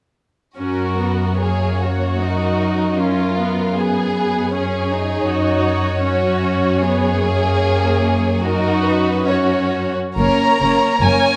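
Classical music for string orchestra, this is a slow romantic movement in 3/4 at 60-80 BPM, played with rubato in F# major and carrying a warm, tender mood. A dark, woody violin section sings the melody, while a second violin section, rich, expressive and up front, traces a line beneath it, and a focused viola section with a smooth top fills in the accompaniment. The cello section holds a smooth, even bass on F#, all of these bowed with vibrato as a chamber ensemble from 0.6 s. At 10.2 s a distant double bass section with a soft attack joins the cellos on a low F# as the passage moves into a new section. The harmony rests on F# major, shifts to C#7 over an F# bass at 3.0 s, and returns home at 5.3 s. A moderate concert hall reverb surrounds the players, and the recording is cut from a longer piece, ending at 11.4 s.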